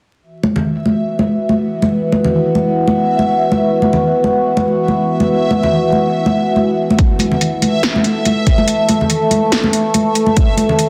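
Deep dubstep with a brooding, cavernous mood, moving in a half-time feel with a light swing on the sixteenths. Up-front congas open the passage at 0.4 seconds, their thick-skinned, medium-tuned acoustic tone sounding vintage and band-limited under soft hands. An overtone-sweeping drone of sawtooth and sine holds sustained chords from E3 to A4, its resonant, slow-attack sound treated with chorus and reverb, while a reversed, granular triangle texture swells dreamily and brilliantly on E5. At 7.0 seconds a forward, overdriven electronic kick arrives alongside a deep house kit of punchy snare and metallic hats, both layered and re-recorded in a large room, with the kit's hats and snare dulled by low-pass filtering. A moderate echo-chamber reverb and digital ambience surround the dense, heavily limited master, which carries a layer of vinyl crackle in this short cut from a longer piece.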